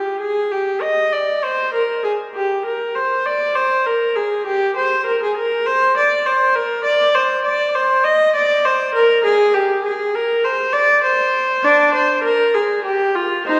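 Grave and solemn, this baroque-style suite movement for unaccompanied viola unfolds in C minor at a slow 66 beats per minute, counted in dotted quarters within a 12/8 metre and shaped with a flexible, rubato feel. A single bowed viola carries the whole passage, its gut-string tone rich and reedy, touched with light vibrato in a period style. The instrument sits up front yet carries a distant quality, moving within a compact range from D4 to Eb5. A wet church reverb with a long 2.8-second decay surrounds the playing, lending the sound the spacious resonance of a church or concert hall. Lasting 13.6 seconds, this brief passage is drawn from a longer piece.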